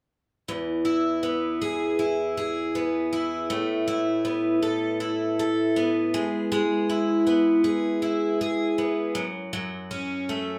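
A picked twelve-string acoustic guitar opens at 0.5 s, its shimmering, octave-doubled tone sitting up front as it accompanies through an easy-going, heartfelt pop passage at 79 BPM in E major with a light sixteenth-note swing. The chords move from E to Asus2 and then to F#m by 9.2 s, the guitar spanning from low E2 up to A4. A wet studio reverb and the feel of a band playing live in one room give this short cut from a longer piece an intimate glow.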